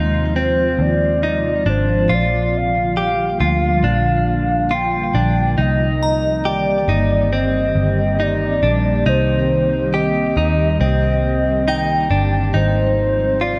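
Dream pop at 69 BPM in C minor, this haunting, ethereal excerpt drifts over a slow chord cycle from Ab6 through Gm7/Bb to Cm7, with an airy pad holding sustained chords under a clean, compressed electric guitar whose arpeggios shimmer through lush chorus and digital delay. A dark, foam-muted picked bass sits round and up front, while a warbling, nostalgic lead with vibrato carries the melody from 0.4 seconds. A glassy, crystalline synth bell adds faint texture in the background from 6.0 seconds, all set in a moderate lush hall reverb.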